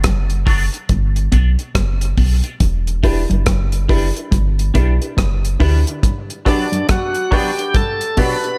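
Set in a light studio reverb, this hazy, laid-back dub reggae excerpt in G major moves at 70 BPM with a swung sixteenth feel, opening on a break where a dry, up-front drum kit of tight kick, hi-hat and rim click and a round, soft sub bass sit under a dark, fingered electric guitar riff tucked in the background with dub echo, while a clean, hollow-body semi-hollow guitar comps through analog chorus, a high-pass filter and dub echo, a filter sweep moving over the clean guitar as the chords shift from Gmaj7 to Em7 and back. Woody, boxy upright piano stabs with dub echo arrive at 3.0 seconds, the sub bass drops out at 5.8 seconds, and at 6.5 seconds a bright, shouting tonewheel organ melody pushes forward, lightly overdriven through a slow rotary speaker and dub echo.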